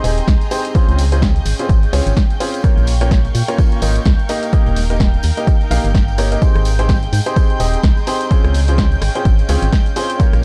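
A swung 4/4 groove drives this joyful, feel-good piano house clip, built on an overdriven, punchy electronic kick that arrives at 0.3 s, a punchy analog drum machine playing hi-hat, rim click and snare, and a tambourine tucked in the background. A hollow, organ-like FM bass with a fast, decaying attack sits dark and up front, while a clear, woody upright piano with audible action noise plays a riff through tape echo, and the bass, piano and both string parts all pump against the sidechain. Behind them, a silky analog string pad with ensemble chorus holds chords moving from Abmaj7 through Dbmaj7, Bbm and Eb, while an intense, bowed studio string section adds texture. The mix is dry and gritty, with a cassette-tape character.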